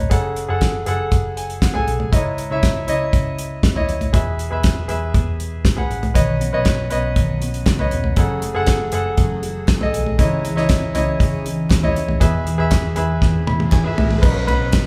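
Captured as a band playing live in one large, reverberant studio room, this anthemic, uplifting piano-driven pop passage in E major moves at a straight 119 BPM over a repeating F#madd9–C#madd9–E–Badd9 progression. A clear, polished concert grand piano with deep bass and short sustain sits up front, adding brief fills, while a damped 70s drum kit with a fat snare and tight kick drives from the start and adds a fill near the close. A dark, round, foam-muted vintage electric bass anchors the low end, and a full-bodied jumbo steel-string acoustic guitar with fresh strings and audible finger squeak brings in a picked riff at 6.1 s. Very quiet, crisp group handclaps join at 6.7 s, and a faint electronic riser enters at 13.4 s.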